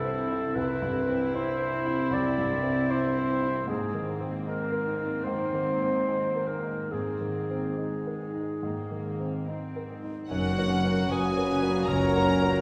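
A wet recital-hall reverb surrounds this uplifting, tender passage from a cinematic, emotional film score, cut from a longer piece and moving at a rubato 70-78 BPM in 4/4. From the start, a mellow solo clarinet sits up front with a distant, roomy second line over a worn, present baby grand piano, a pure, floating viola section playing sul tasto, and a ringing, thumb-plucked concert harp spinning arpeggios in the background. A close cello section holds the bass beneath them with a soft attack. The clarinet stops at 9.5 seconds, and at 10.3 seconds the harmony shifts as fuller orchestra arrives: a clear violin section takes the melody, while a smooth-topped second violin section, a very quiet, straight-toned flute ensemble and a cor anglais with light vibrato add further lines. A tight French horn section supplies sustained chords, and a chamber double bass section joins the cellos on the bass.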